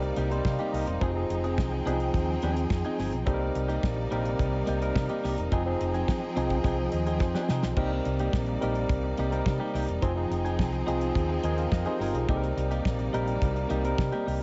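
A straight disco groove from a damped, dry 70s drum kit with a tight kick and rolled-off top drives this glamorous clip from a longer piece, while a round, punchy hollow-body bass sits up front alongside a barky, lightly overdriven tine electric piano. A twangy, compressed clean electric guitar stays in the background and a focused studio string section holds bowed chords with vibrato, all cycling between Cm7 and Fm7. The electric piano breaks into a fill at 6.6 seconds, joined by a drum fill at 7.2 seconds, all in a small room with light reverb and a darkened top end.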